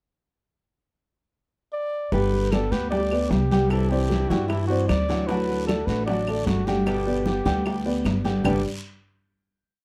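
A bucket-muted trumpet carries the melody in veiled, forceful jazz-style call phrases with vibrato, entering at 1.7 seconds over a sunny Cuban son and guajira groove in G major at 152 BPM. From 2.1 seconds a growly, thumpy upright bass plays an up-front tumbao that anticipates the chords, while a worn, boxy baby grand piano with audible action noise plays a montuno in octaves and a fingerpicked flamenco guitar strums with muted slaps in the background. Congas with slaps and open strokes, very quiet bongos in steady eighths with hand bell, a raspy, distant guiro and woody claves keeping a two-bar time line fill out this short, dry, close 1970s-style studio piece, which ends on a final chord.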